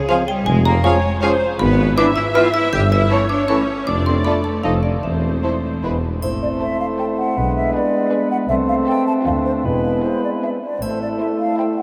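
Sneaky and quirky, this playful, whimsical film cue moves at 157 BPM in a straight 3/4, set in A minor and cut from a longer piece. A dry, woody xylophone struck with plastic mallets carries the melody until 6.0 seconds, alongside a very quiet, vibrato-rich chamber violin section that continues to the end, while a mellow, hollow concert flute, a smooth cor anglais, a dark, distant clarinet and a lush studio violin section add second lines. An intense symphonic viola section and a clear, very quiet bassoon supply accompaniment, a tight, close-miked French horn section holds sustained chords, and the bass rests on a focused chamber cello section, a chamber double bass section and a close-miked tuba, which drops out at 6.2 seconds. At that point the cue turns from its opening section to a second one, settling onto A minor as a faint triangle adds bright touches at 6.2 and again at 10.8 seconds. 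The harmony slips through chromatic colours such as Db/F, F7 and G#dim/B before cadencing on E and returning home to A minor. A huge, wet reverb places the ensemble in a vast, echoing space.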